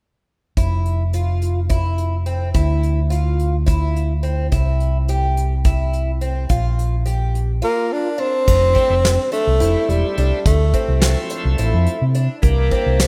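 Set in a straight, uneven 7/8, this is a bright and driving progressive instrumental cut from a longer piece. A soft brush drum kit with a punchy kick, fat snare and dark cymbals carries the groove alongside a round, amped fingered electric bass that sits up front. A picked twelve-string acoustic guitar with old strings plays woody, boxy arpeggios, its octave-doubled strings giving a shimmering edge, as the chords move from F5 through Dmadd9 and C to Bb5. At 7.6 seconds a clear tenor saxophone takes the melody, close-miked and jazz-styled with vibrato, scooped notes and a digital delay. A lightly overdriven tonewheel organ joins at 8.7 seconds, its shouting tone, key click and slow rotary speaker adding body alongside the saxophone as the harmony turns to Fmaj9, Dm9 and C7. The whole band sits in light studio ambience with the rough feel of a home demo.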